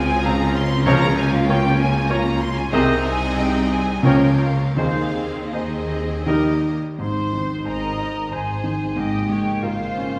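Heard from further back in a wet scoring-stage hall, this passionate, lush romantic excerpt in a rubato 3/4 sets a clear, up-front baby grand piano on the melody alongside a rich bowed violin section, while a second violin line, an airy flute section, a distant oboe and a barely audible mellow clarinet carry second lines; a smooth viola section and a background bassoon fill the accompaniment; a focused double bass section, a very quiet cello section with portamento and a roomy tuba that drops out at 6.8 s hold the bass; a warm French horn section and a tight, bright trombone section sustain chords; and a punchy vintage trumpet adds stabs.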